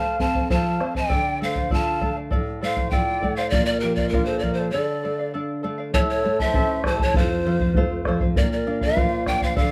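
A breathy pan flute with a crisp, chiffy attack and vibrato carries the melody up front, its slapback echo giving this melancholic, earthy Andean folk excerpt its lead voice, while a distant, reedy large quena traces a second line, a shimmering double-strung charango and a bright, fingerpicked nylon-string guitar accompany, a round, band-limited bombo sits up front from 0.2 s, and a break at 4.7 s leads into a second section at 5.9 s in a dark studio sound.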